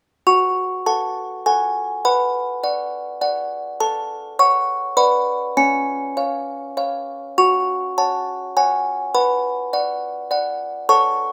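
Lightly reverberant and close, this short passage from a longer classical lullaby features a solo music box, its tone bright and tinkling with the fuller body of a large box. Playing alone from 0.3 to 11.3 seconds in a rubato triple metre, its delicate plucked notes move through a minor-key progression that reaches a C# chord before returning to F# minor and closing on B minor. The mood is fragile and wistful.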